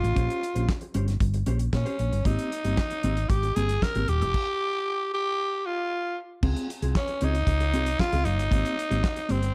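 A dark, dry production with little reverb frames this driving, glamorous disco excerpt, cut from a longer piece. A growling, raspy tenor saxophone with light vibrato and a slapback echo carries the melody up front, over a round, amped hollow-body fingered bass, a damped 70s drum kit with a fat snare, tight kick, dark cymbals, hi-hat, crash and handclaps, and a mellow, compressed clean electric guitar whose pitch drifts in a warbly way. Moving from Bbm69 to Abmaj9, the groove breaks for a stop between 4.3 and 6.4 seconds before a new section resumes on Dbmaj7.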